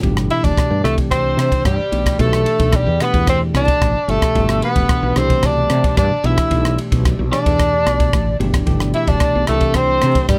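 Bright and slick, this excerpt of electric jazz fusion moves at 111 BPM in a straight 4/4 through a cycling G13, C6, Em7/B and A9sus4 progression in G major. Entering together at 0.3 s, a breathy tenor saxophone carries the up-front melody with vibrato and scooped notes, while a crunchy, double-tracked overdriven guitar with tape echo plays a quieter second line. Underneath, a tine electric piano with analog chorus through a combo amp, a growly, woody fretless bass also treated with chorus, and a crisp, polished drum kit of tight kick, ride cymbal and rim click sit together in a light reverb.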